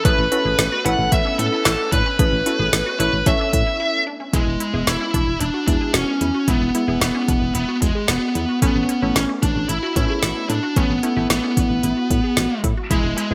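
A bluesy overdriven electric lead guitar sits up front, its dark, distorted picked melody trailed by delay, over a nostalgic, bright synth-pop groove driven by a deep house drum kit with a deep kick, woody snare, smooth hats, handclaps and gated reverb. Round, punchy FM bass and chorused analog keys with a filter sweep carry the Aadd9 and E chords, while a squelchy, resonant blip pluck spins phased arpeggios in the background. A silky, very quiet string machine holds chords only until 4.3 seconds, lasting through a short break, in this bright 1980s-style digital production with light reverb.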